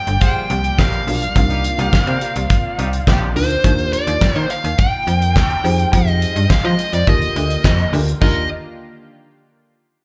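A dark, overdriven lead guitar with slapback echo carries the melody up front in this feel-good, smooth early-eighties boogie funk excerpt at 105 BPM in Eb major, riding a snappy, metallic FM slap bass, a tight, fat-snared 70s drum kit with handclaps and dark cymbals, a shimmering chorused pulse-width pad in the background, a worn, slightly out-of-tune tine electric piano with phaser that enters at 1.1 s, and a distant horn section with light vibrato that drops out at 3.3 s, the whole mix heard live through a club PA.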